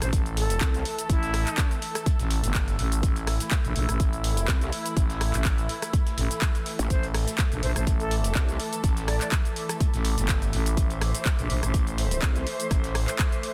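A breathy flute with dub echo, veiled muted strings, a warbling lo-fi pad, a thick growling FM bass and a house kit of cabasa, handclaps, hi-hat and rim click open this bouncy, aggressive bass house excerpt, joined by a barely audible impact at 0.9 seconds, a punchy electronic kick up front, a gritty, very quiet sampler-style soul kit of hi-hat and snare, and a saturated, wobbling growl bass that plays at length from 4.5 to 8.6 seconds, with the strings, pad and both basses pumping to the sidechain inside a dense, heavily limited master.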